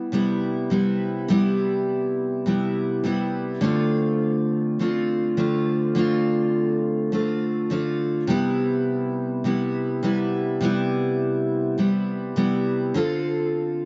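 A lightly swung 4/4 at 103 BPM sets a laid-back, hazy indie pop mood in C major, as a full-bodied, up-front picked steel-string acoustic guitar plays alone from 0.0 to 13.9 s between C3 and A4, its tone colored by subtle chorus and a warbly pitch drift while it moves between Cmaj7 and Dm7 in a moderate spring reverb whose dulled top end adds to the hazy feel of this short excerpt cut from a longer piece.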